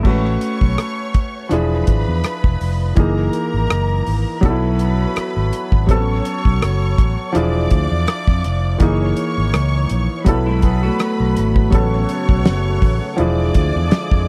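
A damped 1970s drum kit sits up front with a fat snare, tight kick and dark cymbals, setting a romantic, lushly arranged soul groove at 82 BPM in E major with a light swing. A growly fingered electric bass and an intimate concert grand piano, its action noise audible, carry the harmony, while a distant, bowed string section adds a focused second line above. A slightly broken-up electric guitar riff flickers at the very start and returns briefly around 10.5 seconds, and a gritty overdriven tonewheel organ with slow rotary speaker and chorus vibrato slips into the background at 11.7 seconds, all within a dry, close small-room sound.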